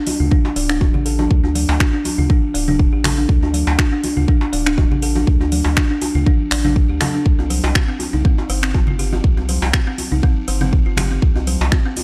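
A punchy, up-front electronic kick anchors this hypnotic, earthy afro house passage alongside a house kit of finger snaps and metallic hi-hats, background congas and a cracking djembe with metal rattles. A buzzing, woody kalimba plays arpeggios through a low-pass filter sweep and tape echo, pumping against the kick alongside a deep, round analog bass, with the harmony moving at 7.3 seconds. The mix is dry and gritty, with transformer saturation lending a hardware edge.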